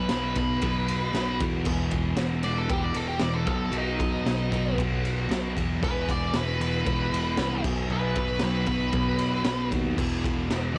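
A straight 4/4 pulse at 116 BPM drives this raw, menacing garage rock excerpt, where a dark octave-fuzz lead guitar carries the melody over a double-tracked fuzz guitar riff built on B5 and E5 power chords, a bright, growly picked electric bass, and an up-front acoustic drum kit with a boomy kick, dark cymbals and a gritty, saturated small-room sound, all captured as a home recording on cassette.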